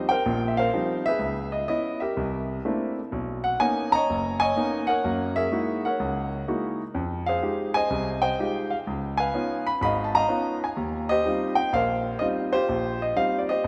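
A swung 4/4 lilt carries this playful, sophisticated solo jazz passage, cut from a longer piece, where a single up-front concert grand piano with a deep bass and a smooth, vintage tone moves through rich extended chords from Eb69 to Dbm7, C13, Bmaj9, Gb13, Fm9 and Db9 before returning to Eb69 at 10.8 seconds, all bathed in a lush hall reverb within a rough home demo mix that carries a faint mains hum.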